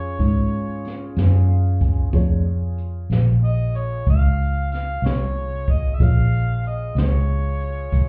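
Brooding and mournful, this slow blues in 12/8 moves at 62 BPM in Bb minor, resting on a single Bbm7 chord across a short section cut from a longer piece. An overdriven harmonica carries the melody with a gritty, amplified tone, light vibrato, scooped notes and tongue slaps in a jazz-inflected solo voice. Up front, a vintage muted electric bass is played with the fingers, foam-muted, round and dark through an amp, while a jazz brush kit enters at 0.2 s, sounding distant and roomy with a high-tuned snare and a boomy kick. A tonewheel organ holds clean, clear sustained chords through a slow rotary speaker, and a worn, slightly out-of-tune tine electric piano sits in the background through a combo amp with phaser, adding a brief fill at 1.2 s. The harmonica, organ and piano carry plate reverb, and the whole mix sounds muffled, as if heard through a wall in a club, with its top end dulled.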